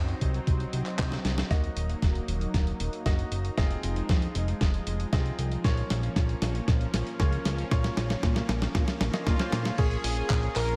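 A straight 4/4 groove of thumpy, gritty electronic kick and a dusty sampler-style kit with handclaps, hi-hat, snare and crash drives this nostalgic, danceable italo disco fragment, where a fat, saturated analog bass sits beneath a lush, warbling chorused pad and bright grand piano stabs tucked into the background with delay and shimmer reverb; a drum fill at 1.0 seconds leads into the main section, and a very quiet electronic swell at 9.1 seconds ushers in bold, brassy analog synth brass carrying the melody from 9.3 seconds.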